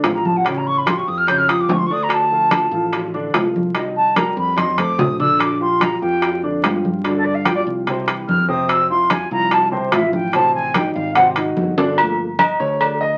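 Fiery yet sultry, this Afro-Cuban jazz excerpt moves at 146 BPM in a straight 4/4, centered on G minor. A silver concert flute carries a solo from the opening moments, its airy, metallic straight tone and crisp attack sitting up front yet sounding distant, before stopping at 11.3 seconds. Beneath it, a baby grand piano with natural, long-sustaining tone supplies the harmony, moving through colors such as Aaug7, Dm7, Fmaj7 and Am7b5, then takes a brief solo from 12.0 seconds over a closing Gm9. A dark, rounded fingered electric bass anchors the low end, while a layered percussion section drives the groove: ringing metal-shell timbales and agogo bells close and dry at the front, bright thin-skinned congas played with soft hands, and low-tuned bongos and cowbell set back in a large room, with drum fills around 4.6 seconds and 11.8 seconds. The whole sits in a studio reverb and carries the crackle and aged character of a very old 78 rpm record.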